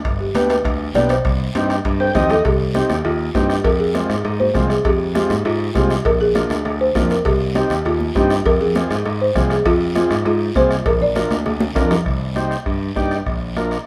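Cumbia at a driving 200 BPM in 4/4, passionate and pushing forward, with a woody, round folk marimba on soft mallets carrying the melody over a reedy vintage combo organ with light vibrato that plays a short fill at about 1.9 seconds. Up front, a bright, punchy picked electric bass anchors the groove, while a distant bombo, raspy guiro, high-tuned congas and ringing metal-shell timbales with cowbell fill out the percussion, the timbales and cowbell dropping out at 12.0 seconds. Drum fills mark the turns, and the chords move through G, Cm, Fm and Bb in light reverb, in a passage cut from a longer piece.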